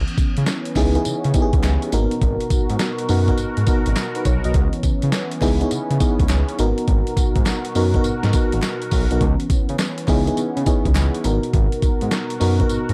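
A dark, warm mix sits in a digital ambience, with a gritty, pitched-down sampler-style drum kit up front from 0.1 seconds, its thumpy kick, medium-tuned snare, hi-hat and tambourine carrying a tape-like grain. This is a confident, slick slice of new jack swing R&B in G# minor at 103 BPM, its 16ths swung at 65%, cut from a longer piece. A smooth sawtooth-and-square synth bass glides between notes with portamento, detuned and sustained beneath the groove. From 0.8 seconds an FM electric piano with tremolo plays mellow, decaying accompaniment up front, a faint noise layer riding its fast attack. Behind it, a detuned, evolving sawtooth pad holds sustained chords with a slow attack, filter swell and chorus, while a very quiet, crisp group handclap sounds distant in a large room. The harmony rocks between C#m9 and G#m9 throughout.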